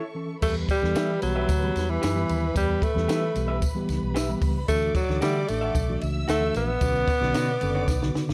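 A short break opens this driving, urgent slice of uptempo 1960s-style soul. A lush, bowed violin section and slightly broken-up electric guitar stabs from a small old amp sound from the first instant, joined by a mellow tine electric piano played through its built-in speakers. At 0.4 seconds a breathy tenor saxophone takes the melody up front, with scooped notes and jazz-style vibrato. Beneath it sit a round, foam-muted fingered electric bass and a compact cocktail drum kit with a punchy kick and high-tuned snare, recorded in a tight booth. A jingly tambourine sits close and dry in the background at 113 BPM in straight 4/4, as the harmony moves from Em to Dadd9 and then Bmadd9. At 4.7 seconds a vibraphone with soft mallets and slow motor vibrato slips in as a barely audible second line, a drum fill closes the cut, and studio reverb gives the production a dark, warm cast.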